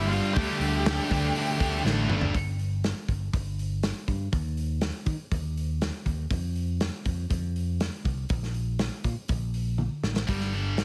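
A straight 4/4 pulse at 121 BPM drives this cathartic, brooding quiet-loud alternative rock fragment, with a loose indie drum kit sitting up front, its tight kick and medium-tuned snare ringing in a small room alongside hi-hat and toms. The opening is a dense wall of guitars over a Dsus4 chord: a fuzzy octave lead carries the melody while three picked riff guitars churn underneath, one bright and scooped with high gain, one sludgy and overdriven in the background, and a dark, double-tracked, compressed overdriven part also tucked back. A drum fill leads into the second section at 2.3 seconds, where the guitars fall away and the growly, punchy picked bass carries on up front with the drums through stretches of open, chordless space and a passage on F5. After another fill, the scooped guitar returns at 10.3 seconds on G5, joined by a boxy, fingerpicked plugged-in parlour acoustic playing arpeggios. 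The whole piece has light studio reverb and a heavily compressed, radio-ready sound.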